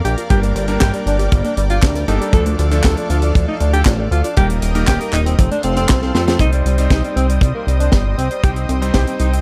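A straight 4/4 italo disco groove at 118 BPM drives this melodramatic, bittersweet excerpt, where a tight, up-front acoustic kick and a funk kit with a high-tuned snare, hi-hat and handclaps anchor a glossy, chorused pulse-wave synth bass, while a distant, roomy alto saxophone with vibrato and delay sings the melody over a lush, detuned unison pad, clangy electric grand piano stabs in the background and a dusty, lo-fi pluck arpeggio that plays until 6.3 s, just as a drum fill at 6.1 s leads from the Gm, Dm, Eb and F progression into a Cm passage in a small room.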